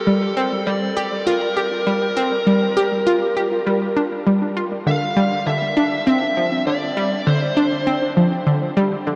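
A bright, round analog pluck carries the riff up front, its sawtooth, square and triangle tones laced with a noise layer, ring modulation and a filter sweep, with fast attack, short decay, chorus and analog delay. It plays from 0.1 to 9.2 seconds in this expansive, cosmic excerpt of sequencer-driven ambient space music at 100 BPM in straight 4/4, in D minor tuned to A4 = 442 Hz. A dark, smooth electric lead guitar, picked and overdriven with analog delay, sings the melody until 8.1 seconds over a shift from Gm to Dm at 4.9 seconds, all bathed in a huge reverb with an 8.0-second tail and a dusky, warm production.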